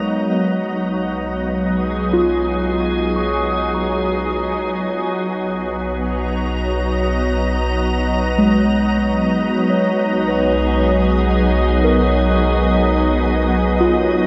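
A bright, pure organ-like pad with ensemble chorus and shimmer reverb holds sustained chords up front in this weightless ambient piece at 77 BPM in 3/4, while muted, warbling felt-like synth keys with tape echo play dark arpeggios in the background and a deep, ominous rumbling drone on B1 fades in across the full 14.3 seconds, all set in an echo-heavy mix with a spring reverb as the chords move from G#m7/B to Bmaj7 and back.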